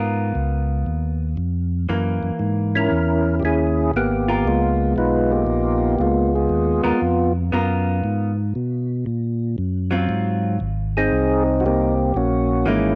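A light reverb sits around this greasy, soulful jazz excerpt, a swung 117 BPM groove in Db mixolydian riding on dominant thirteenth chords. A fat, lightly overdriven tonewheel organ carries the bass line throughout with chorus vibrato, key click and a slow rotary speaker, while a clean, compressed hollow-body electric jazz guitar plays dark, picked accompaniment up front. A mellow, round percussive tonewheel organ, with third-harmonic percussion, its own slow rotary speaker and a touch of overdrive, takes the melody from 2.8 to 7.3 seconds and returns at 11.0 seconds.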